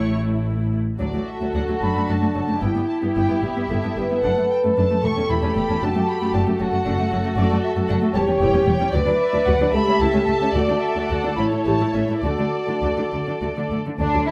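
Graceful and spirited, this short passage cut from a classical-period movement for symphony orchestra moves in a rubato 6/8 at 67-78 BPM in D major. Con sordino violins carry a veiled melody over a second violin line, with viola accompaniment and a bass of cellos and double basses, all bowed with a dark, muted sheen and vibrato. From 1.0 seconds a clear French horn section adds sustained chords, and a moderate stone-room reverb gives the ensemble a gentle halo.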